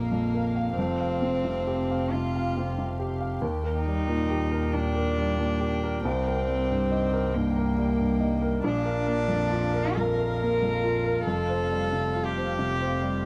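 Neoclassical piano and strings in Bb major at 92 BPM, this hopeful, intimate excerpt moves with a rubato feel through chords such as Fsus2, Eb and Cm7 across its 13.3 seconds. An upright piano, woody with audible action noise and long sustain, sits up front as accompaniment beside a solo cello carrying a second line, its bowed sul tasto tone pure and floating. Beneath them, a dark chamber string section holds sustained chords in the background, and a bowed double bass with an airy bow and light vibrato anchors the low end, all in a nearly dry room.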